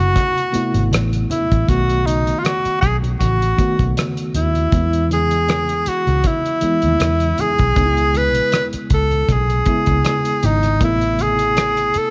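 A clear tenor saxophone sings the melody up front from the very start, its pop-style vibrato riding over a reed electric piano whose reedy, clean chords shimmer with a fast tremolo through built-in speakers. Beneath them, a vintage muted fingered electric bass lays down a dark, round, foam-muted line, and at 0.2 seconds a cloth-damped drum kit enters with a tight, thuddy kick, hi-hat and rim click, its top rolled off as if played in a small room. Low-tuned congas with a thick skin join at the same moment, struck with soft hands and set distant in a large room, barely audible beneath the band. This lush, 1970s-style soul groove moves at an unhurried pace with a gentle swing, drifting from Amadd9 through B7 to E and C#m7 before returning to Amadd9 at 10.8 seconds. Light reverb gives the whole a soft, intimate glow, and the passage is cut from a longer piece.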